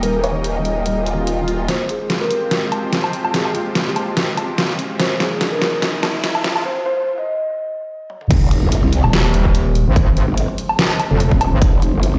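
A growling, formant-filtered bass sits up front in this heavy, aggressive wobble dubstep excerpt, appearing briefly at the start and returning for the drop at 8.3 seconds with chorus and overdrive. Before that, a felt-muted upright piano carries a soft, dark melody through dub echo. Its thick felt and audible action noise give an intimate contrast to a lush, detuned supersaw pad that holds sustained chords under sidechain pumping and a low-pass filter. The overdriven dubstep drum kit, with a deep snare, crash cymbal, hi-hat, toms and woodblock, drives a half-time feel with a light swing, and its fills run through a build-up marked by a riser and filter sweep before a short break. The drop brings a punchy, overdriven electronic kick and, from 9.0 seconds, a metallic FM wobble bass, while background swells, risers and an impact mark the transitions. The harmony moves from Eb to Fmadd9 and settles on Fm, all set in a moderate hall reverb with the weighty sound of a big system playing in a bare room.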